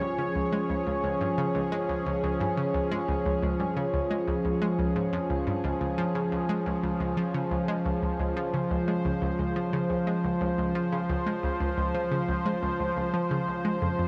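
Ambient, sequencer-driven space music with a cosmic, expansive mood, this short passage is cut from a longer piece and moves in a straight 4/4. A sweeping resonant pad holds sustained chords across the whole 14.1 seconds, its detuned sawtooth tone evolving through a filter swell, with a slow attack, long release, chorus and a shimmer reverb. Beneath it, an analog pluck carries a riff in the low register, round and up front, built from sawtooth, square and triangle waves with a noise layer, ring modulation and a filter sweep. Its fast attack and short decay give each note a clipped shape, further colored by chorus and an analog delay. Both parts sit bright and forward inside a huge, wet ambient reverb whose long tail lets the sound hang in the air well past each note.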